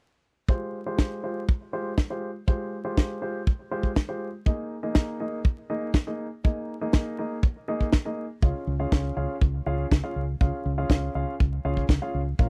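Italo disco with a nostalgic, bittersweet mood, this short cut from a longer piece sets intimate grand piano stabs, with audible action noise and softened by a low-pass filter and tape echo, over an up-front tight kick and high-tuned snare, while a foam-muted fingered electric bass with tube saturation joins at 8.4 s, all in a dry, close 1970s-style studio sound flecked with vinyl crackle.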